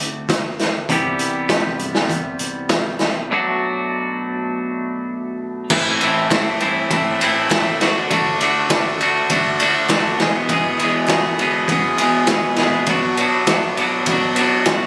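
Captured on a phone in a club-like room with compression, this cool, moody indie rock passage at 100 BPM in A dorian sets a gritty, saturated garage drum kit with a boomy kick up front beside a bright, twangy clean electric guitar riff coloured by subtle chorus and tape echo, while a second picked clean guitar and a round electric bass sit in the background, a break arrives at 3.3 s, and hollow group handclaps join very quietly at 6.3 s over chords moving from D7 and Cmaj7 to Am, D and E.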